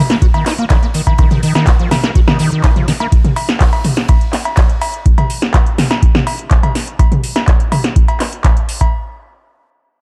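Built on a straight 4/4 pulse at 124 BPM, this short cut from a longer acid house track sits in Eb minor and lands squarely in a drop, with a trippy, raw mood. A deep, tape-warm electronic kick sits up front from 0.2 seconds to the end, alongside an analog electro drum machine supplying cowbell, handclaps, hi-hat, snare and toms, its punchy snare and metallic hats carrying a short room sound from being re-recorded in a small space. Beneath them, a very quiet acoustic fusion kit adds airy hi-hat, ride cymbal and a high-tuned snare until 4.9 seconds. The square-wave acid bass riff, squelchy and hollow with a resonant filter sweep, fast attack and decaying notes, runs from Eb3 to Gb4 through tube saturation, ensemble chorus, sidechain pumping and delay before dropping out at 3.1 seconds. The production is dark and warm, with little reverb.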